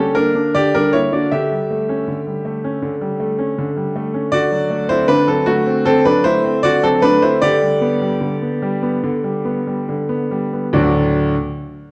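A clear concert grand piano carries this short cut from a classical-period sonatina alone, sounding natural and up front with a deep bass, ranging from D2 to E5 between 0.0 and 11.4 seconds. The mood is playful and graceful, in a 4/4 metre played with rubato, and the pace slows from 2.8 to 10.7 seconds. The harmony moves from Gm/D through A7/D and D7 to G/D before settling on D at 10.7 seconds, where a brief new section begins. A wet recital hall reverb surrounds the instrument, while worn old cassette tape adds a warbling pitch drift that gives the sound an aged, wavering quality. The tuning sits at A4 = 438 Hz, and the piece breaks off as part of a longer work.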